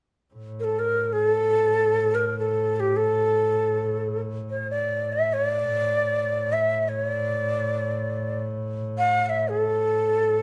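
A moderate large-studio reverb, about 0.9 s long, surrounds this live, one-room performance, a brief slice cut from a longer Turkish piece in free time. From 0.3 s a single bowed double bass holds a clear, earthy drone on A2, its low tone carrying light vibrato and a biting edge beneath the melody. At 0.6 s an end-blown reed-cane ney enters up front, breathy and reedy, tracing a line in makam hicaz on A between G4 and F#5. Its bright voice carries vibrato and tongued articulation, lending the unmeasured phrases a stately yet passionate character. Tuned to A4 = 436 Hz, the two players continue together until the passage breaks off at 10.4 s.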